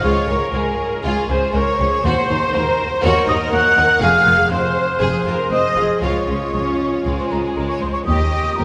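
Bathed in the wet cathedral reverb of a church or concert hall, this triumphant, adventurous cinematic film-score passage in Db major at 120 BPM carries a clear, focused violin section melody beneath an airy, hollow, mellow flute and a smooth, even second violin line, with a rich viola section accompanying until 7.8 s and bowed cellos sitting in the background beside an expressive double bass section, all of the strings singing with vibrato.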